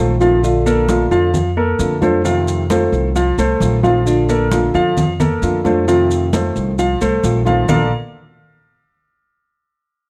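A thumb-plucked nylon-string guitar with audible finger squeak, a polished, up-front concert grand piano playing short-sustained arpeggios and a woody, thumpy gut-string upright bass played pizzicato open this sunny, danceable Cuban son and guajira excerpt at 132 BPM in Bb major, joined by grainy, dry maracas at 0.2 seconds and soft-handed, ringing congas set in the background at 0.4 seconds, all circling between Bbmaj7 and F7 under light reverb and close, detailed miking.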